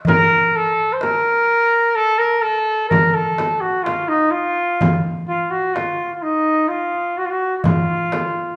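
A mellow, soft-attacked trumpet carries a soulful, longing jazz-style solo up front, moving between Eb4 and C5 in F makam hicaz from 0.1 s to 8.6 s. Beneath it, a high, clay-shelled darbuka with natural skin and a deep, vintage-toned frame drum keep a straight 10/8 pulse at 127 BPM counted in eighths, both stopping at 8.3 s. This Turkish makam ensemble plays live together in one large studio, and generous reverb gives the brief fragment, cut from a longer piece, a roomy glow.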